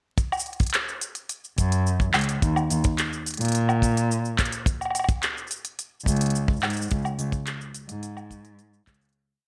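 Pastoral and playful, this short folktronica piece moves at 107 BPM in a straight 4/4, with a soft, tight acoustic kick and a crisp, tape-warm electronic kit of cabasa, closed hi-hat, low woodblock and handclaps clicking out a found-sound beat from 0.2 seconds. At 1.6 seconds a dark, nasal bowed cello enters with vibrato and portamento, playing an expressive dub-style bass line between Db2 and Bb2. The sound is dry and up front with a layer of vinyl crackle, and the whole piece fades out from 6.2 seconds to its close at 9.2.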